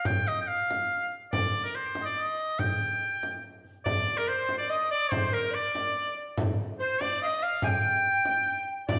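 A clear shawm opens this short excerpt of a medieval dance in G minor, carrying the melody with vibrato, soft attacks and scooped notes in an up-front, folk-style voice, joined almost at once by a small, bright frame drum with a compressed, saturated sound. At 3.9 seconds a distant alto recorder enters on a second line, its pure wooden tone marked by a crisp chiff and vibrato. The 3/4 pulse moves at 143 BPM with a straight feel, and the reverberant church-like hall gives the whole an ancient, mysterious air.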